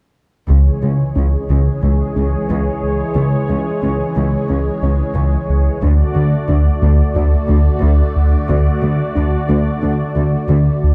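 At 0.5 s a brassy, chorused analog pad, a glassy wavetable pluck playing arpeggios through chorus and delay in the background, a nasal synth bass riff up front and a lush bowed cello section all enter together in this vast, relentless cinematic excerpt at 90 BPM in C# phrygian, shifting from C#m to D at 5.8 s within a moderate concert-hall reverb and a dark, warm production.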